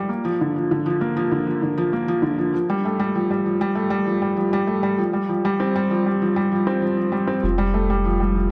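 Piano and strings electronica at 98 BPM in 4/4, hopeful and luminous, where a felt-muted upright piano plays an intimate, mellow riff up front with digital delay and audible action noise over Bb, Fadd9 and Csus4 through the build-up, until a deep, round sine sub bass arrives at 7.4 s for the drop back on Fadd9, all set in a lush hall reverb with dark production.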